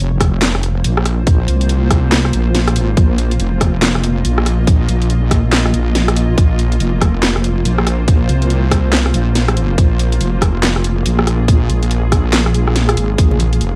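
A blurred, evolving granular pad holding sustained Bb5 chords and a saturated, detuned wobble bass open this heavy, cavernous deep dubstep excerpt at 141 BPM with a swung, half-time feel. From 0.2 seconds a tight, up-front electronic kick and a garage kit of cracking snare, bright hats, handclaps and rim clicks drive the groove, each set in studio reverb, while the pad keeps its own built-in reverb and the bass carries chorus. Congas slip in briefly in the background at 13.3 seconds, and the whole piece has a dry, gritty hardware sound flecked with vinyl crackle.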